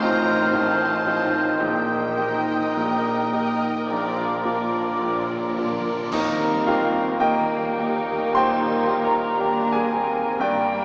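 A cavernous cathedral reverb with a small-speaker sound wraps this lush, passionate romantic movement for piano and orchestra in Eb major, a slow rubato excerpt at 50-60 BPM where a clear, intimate baby grand with audible action noise carries the melody up front over a background of bowed strings (a smooth-topped violin section on melody, a distant, intense violin section, a portamento-laced viola section, cellos and double basses), a pure silver flute, a roomy cor anglais, a close-miked bassoon, mellow French horns holding chords, and bright cymbals, bass drum and dry timpani that enter at 1.6 s, with a timpani fill leading to a band accent at 6.1 s.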